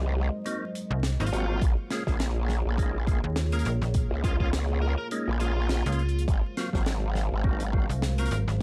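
A growling, wobbling bass sits up front in this swaggering, funky glitch hop excerpt in Bb minor at 103 BPM, joined from 0.9 s by a snappy, metallic FM bass with a slap-like attack, while an overdriven, punchy electronic kick enters at 1.6 s. A crisp fusion kit with an airy, high-tuned snare and hi-hat drives a 16th-note swing, as a percussive tonewheel organ fires off mellow, round stabs through fast rotary speaker, chorus vibrato, delay and sidechain pumping, and a biting, overdriven lead guitar plays a picked melody with delay. A deep, moody sawtooth pad holds sustained chords in the background over a move from Ab13 to Bbm7 and back, all wrapped in a dark production with light reverb and vinyl crackle.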